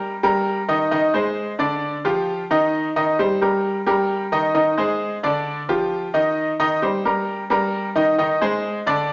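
Nostalgic and warm, this brief latin excerpt cut from a longer piece features a solo grand piano, brilliant yet worn, with short sustain and up front in the mix, cycling through Eb, Ab, G5 and Cm chords in a straight 4/4 feel within a wet large studio reverb, with the top end rolled off above 7.4 kHz.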